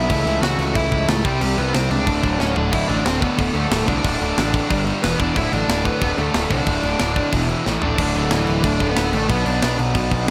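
Energetic, rowdy punk rock at 183 BPM in D major, with a dark, smooth overdriven lead guitar carrying the melody with digital delay over bright, double-tracked distorted electric guitar, a raw garage guitar in the background and a very quiet sludgy distorted guitar, all driven by a growly, punchy fuzz bass and a tight, up-front metal drum kit with bright cymbals that plays fills at 2.4 and 7.7 seconds, in a dry mix cut from a longer piece.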